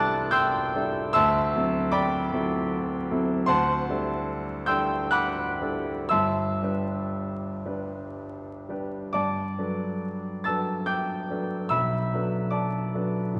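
In a rubato three-beat lilt, this serene, hazy impressionist solo piano excerpt lets a clear, smooth grand piano with a vintage character and long sustain ring up front across a deep register span, drifting through C69, D9 and G6 colourings before moving into a new passage at 9.1 s on Gmaj9 and Bm7, all bathed in the wet reverb of a scoring stage heard from further back in the room beneath a layer of vinyl crackle.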